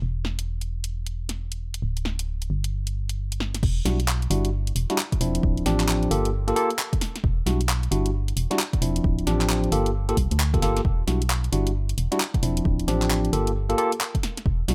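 Two-step UK garage at 133 BPM with a swung 16th-note feel in E minor, this late-night, soulful fragment of a longer piece opens on a hollow, organ-like FM bass and an overdriven, layered garage kit of crash, handclaps, hi-hat and cracking snare. The drop lands at 3.6 seconds with a punchy, tape-warm electronic kick, and at 3.9 seconds a bright, clean tine electric piano enters up front with tape-echoed stabs, cycling through Em9, Dm9 and Gm9. The dark, fast-decaying bass stays prominent in a dry mix with little reverb.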